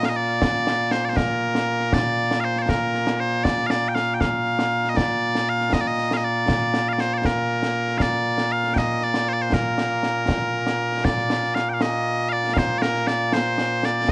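A straight 6/8 pulse drives this proud, stirring fragment of Scottish pipe music, cut from a longer piece. Piercing, continuous bagpipes carry the melody up front from start to finish, backed by an acoustic concert snare drum and concert bass drum with dark cymbals in a small room, and the tune moves into a new section at 11.0 seconds. Light reverb and the worn, warbling pitch drift of old cassette tape give the whole recording an aged, faded character.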